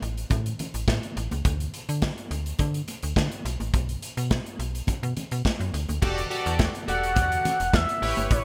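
A straight 4/4 groove at 105 BPM drives this short, feel-good slice of early-eighties boogie funk, built for dancing. From the start, a snappy, metallic slap-like FM bass sits up front beside a modern studio drum kit whose tight kick, medium-tuned snare, hi-hat and crash are bathed in gated reverb and a pumping room sound. Very quiet congas with a thick, damped skin and high tuning add a soft acoustic layer beneath them. At 6.0 seconds the harmony settles onto an Em11 chord as a glossy, detuned polysynth enters with shimmering chorus and a filter sweep, and at 6.9 seconds an expressive, nasal synth lead with vibrato and chorus steps to the front in a high register. The whole piece carries a bright 1980s-style digital production with light reverb and a small room ambience.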